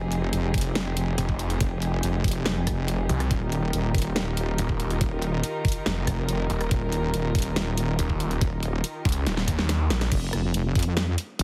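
Heavy wobble dubstep at 141 BPM in a half-time 4/4 feel, menacing and heavy, where an up-front saturated wobble bass with chorus and overdrive and a snarling, growling distorted saw bass entering at 1.2 seconds drive the drop over a knocking electronic kick and a dubstep kit with a huge snare and bright hats in studio reverb, while a dark, intimate chamber string section bowing sul tasto holds sustained Fm7 and Ebadd9 chords under sidechain pumping and a low-pass filter until a drum fill at 9.3 seconds leads to a brief chordless stretch from 10.1 seconds, all pressed into a heavily compressed, dry radio sound in this cut from a longer piece.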